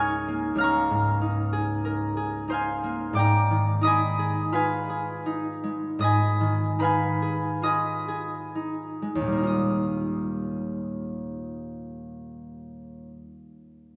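Dreamy and luminous, this rubato classical excerpt in Eb major drifts at 32-49 BPM as a bright, ringing concert harp, fingerpicked and up front, spans Db2 to Ab6 over chords moving from Db69 to Abm6 and settling on Ebadd9 at 9.5 seconds, slowing through its opening before the harp stops at 13.1 seconds into a wet church reverb with a 3.8-second tail.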